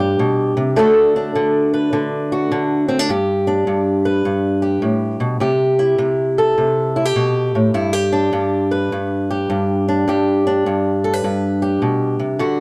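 A fingerpicked old ladder-braced acoustic guitar carries this soulful, swaggering blues excerpt alone, sitting up front with a woody, boxy tone and the character of old strings. The tempo is 103 BPM in 4/4 with a swung eighth-note feel, in G major, and the guitar ranges from G2 to B4. The opening passage moves from G to D before a new section arrives at 3.1 seconds, where the harmony settles on G, shifts to C at 5.4 seconds, and returns to G at 7.7 seconds. The production is dark, set in a wet small room whose short reverb lends an intimate, close feel. Cut from a longer piece, the excerpt ends at 12.6 seconds.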